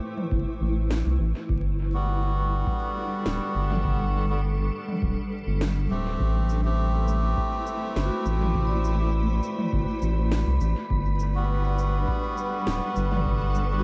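A blurred, detuned granular cloud pad with 12-bit sampler grit opens this hazy, meditative ambient dub excerpt at 102 BPM in 4/4, drifting between Am, Gmaj7 and Am7 as an overdriven organic electronic kit of shaker, woody snare and toms trails dub echo over a tape-warm electronic kick in the background, while a round, dark analog bass sits up front and reedy, nasal melodica stabs echo from 1.9 seconds, a mellow wind-like noise texture enters at 6.9 seconds and a ringing vibraphone played with hard mallets adds echoed arpeggios from 8.1 seconds, all wrapped in an echo-heavy mix with vinyl crackle.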